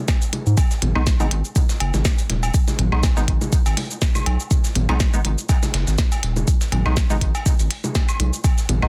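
Minimal techno with a cool, sparse mood and a light swing, cut from a longer piece: a deep, up-front electronic kick and a minimal click drum kit of tiny snare, clicky hats and cabasa run from the start beside tape-warm cowbell, bongos, congas and woodblock and a gritty, fat-snared sampler-style soul kit with tambourine sitting in the background, while a thick, saturated sine sub bass with sidechain pumping joins at 0.5 s and crisp, detuned wavetable chord stabs treated with phaser, 12-bit sampler texture and delay arrive at 1.0 s, all within a dry, dense, heavily limited master.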